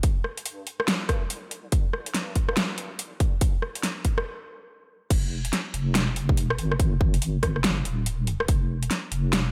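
A digital ambience surrounds this dark, meditative deep dubstep fragment, cut from a longer piece, with tape-warm drums sitting up front in a studio reverb. The half-time groove swings on its sixteenths as a layered, punchy electronic kick drives beneath a kit of huge snare, metallic hi-hats, rim clicks and crash cymbal. A deep, soft wobble bass, rounded like a sine or triangle, holds sustained, saturated and compressed notes, thickened by chorus and trimmed by a high-pass filter. The opening section is a build-up that halts in a stop at 4.3 seconds before the drop lands at 5.1 seconds. Through the drop the dark, wobbling bass carries on while the kick falls away at 8.6 seconds.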